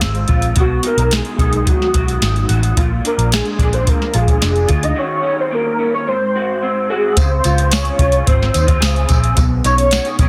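A mellow, octave-layered synth lead with a detuned, sub-octave roundness and gentle vibrato carries the melody over a crisp, tape-warm vintage rhythm box, a dark, foam-muted picked bass and a slightly broken-up, lo-fi electric guitar with chorus and warbly pitch drift, in this nostalgic, laid-back bedroom-pop cut at 109 BPM in Db major, moving through Dbmaj7, Cb6, Bb7, Ebm7 and Ab7 under light reverb, with a jingly, band-limited tambourine joining in the background at 7.2 seconds.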